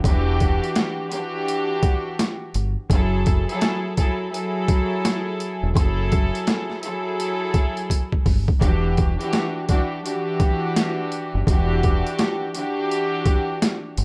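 A swung boom-bap hip-hop groove at 84 BPM in 4/4 drives this dark, gritty excerpt. It is built on a pitched-down, compressed sampler-style kit with a thumpy kick, a high-tuned snare and hi-hat, all overdriven and up front, with a drum fill at 7.9 seconds. A round, dub-deep fingered electric bass sits low beneath a bowed string ensemble with a reedy gut-string tone and smooth top, filtered and tape-worn, moving from Em9 to F#m9 and back to Em9 in a moderate studio reverb.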